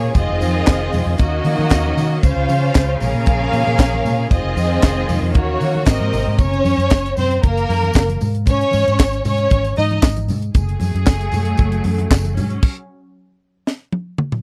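Glamorous, celebratory disco cut from a longer piece, with a tight, up-front funk drum kit (bright cymbals, high-tuned snare, handclaps and toms), a dark, round muted electric bass, a lush vibrato violin section carrying a second line until 10.0 seconds over distant, clear sustained string chords, and a quiet bed of thin-skinned congas and jingly background tambourine, all captured in a dry, close 1970s-style studio sound before everything stops at 12.6 seconds, leaving a drum fill at 13.7 seconds.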